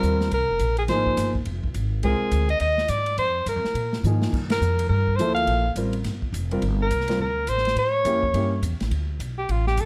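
Modal jazz with an intense, hypnotic mood, swinging briskly in four as a short excerpt from a longer piece. An up-front soprano saxophone carries the melody with vibrato, soft attacks and scooped notes, over a woody pizzicato upright bass and natural grand piano comping that drops out at 8.5 seconds. A big-band drum kit with dark cymbals and a punchy kick plays a fill at 4.0 seconds before a band accent at 4.5, all set in light reverb with a dark production.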